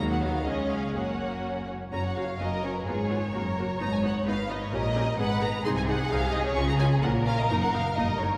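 A straight 2/4 pulse at 128 BPM carries this quick, graceful and spirited classical-period movement for string orchestra in F# major, cut from a longer piece. A rich, expressive first violin section carries the melody up to Db6 with vibrato, while a soft-edged, lush second violin section adds a gentle second line beneath. Clear, focused violas supply the accompaniment, and a warm cello section pairs with a rich double bass section on the bass line, all bowed with vibrato, heard from further back in a concert hall with a long, wet reverb.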